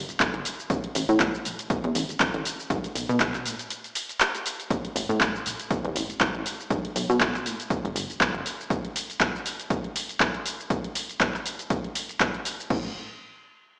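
Heard as if through a big sound system in a bare stone room with a small-speaker edge, this sensual, funky filtered disco house clip swings its 16ths. A plucky, wave-folded analog bass pumps under sidechain and a low-pass filter sweep until 8.4 seconds, then returns briefly at 12.7 seconds. Meanwhile a punchy analog drum machine, with pumping crash, handclaps, hi-hat and shaker, sits up front beside a hard-hitting electronic kick.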